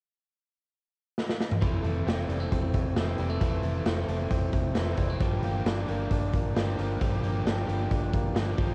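Breezy and nostalgic, this short excerpt of jangly indie pop in a straight 4/4 opens with a raw garage drum kit, gritty and up front with a punchy kick and a bright, pumping stone-room sound, whose fill at 1.2 seconds leads the full band in at 1.6 seconds. A crunchy overdriven guitar plays picked accompaniment beside a twangy, clean, direct-recorded electric guitar playing arpeggios through tape echo, while a round, foam-muted fingered bass holds the low end as the chords move from Fmaj7 to Gm7 at 5.2 seconds. Light reverb and the home cassette recording give it a lo-fi charm.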